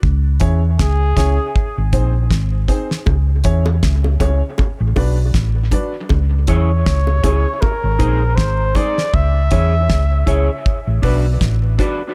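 Meditative and heavy, this 79 BPM dub reggae cut from a longer piece in C# phrygian rides a dark, round, hollow-body fingered bass and a damped 70s kit with a fat snare and tight kick, while a woody upright piano with audible action noise stabs through dub echo, a close-miked flugelhorn with vibrato and scooped notes sings briefly at 0.8 seconds and returns at 6.5 seconds, high-tuned, saturated bongos played with soft hands fill the middle, and a clean, mellow electric guitar with analog chorus joins at 6.5 seconds over an echo-heavy small-room mix.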